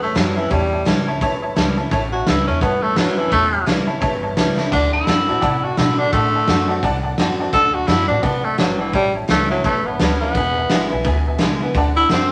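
A raspy tenor saxophone with scooped notes and light vibrato leads from the first beat over jangly, detuned honky-tonk upright piano, bright picked dreadnought acoustic guitar and thumpy pizzicato upright bass on gut strings, with a gritty, punchy garage drum kit joining up front at 0.2 s in this rollicking, upbeat rockabilly excerpt at 171 BPM with a swung feel in A mixolydian, moving through A7, D7 and E7 as the piano drops a fill at 3.7 s and the drums add one at 4.5 s, inside a moderate studio reverb.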